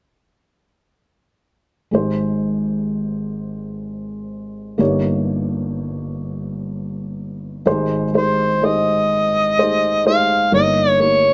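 A slow, straight 6/8 pulse moves at 42 beats per minute in dotted quarters, giving this intimate, tender acoustic folk-pop ballad in Ab major an unhurried sway; it is cut from a longer piece. A felt-muted upright piano enters at 1.9 seconds and carries the accompaniment, its thick-felt tone soft and mellow, sitting up front as it moves between Abmaj7 and Eb7/G. At 8.2 seconds an overdriven, amplified harmonica takes the melody in a jazz-style solo line, warm yet gritty in character, with vibrato, scooped notes and tongue slaps. The harmonica is also placed up front and sits louder than the piano, with a light reverb around the parts and both playing through to 11.3 seconds.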